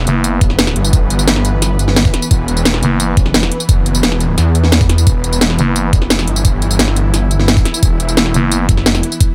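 A swarming, wave-folded, granular drone of sustained chords with built-in reverb and a thick, detuned, saturated sawtooth bass with chorus and overdrive, both pumping against the sidechain, open this tense, futuristic excerpt of dark technical drum and bass at 174 BPM in E minor. They are joined at 0.1 s by an up-front kit of cracking snare, metallic hi-hats and tambourine along with brief growling FM bass bursts on F#1, and at 0.4 s by a loud, knocking electronic kick, all in a dry, tape-toned small-room sound.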